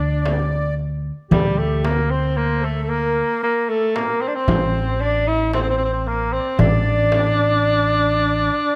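A breathy tenor saxophone leads this longing, melancholic Arabic maqam ensemble piece in 10/8, its whispered subtone melody carried with vibrato, soft attacks and scooped notes in an intimate, vintage jazz style up front. Behind it, a reedy, sweet accordion with light tremolo tuning plays a second line, while a woody, thumpy pizzicato upright bass with steel strings sits close. A crisp metal-shell darbuka plays in the background alongside a small, bright frame drum that sounds distant and stops at 7.4 seconds, with light reverb over this short fragment of a longer piece.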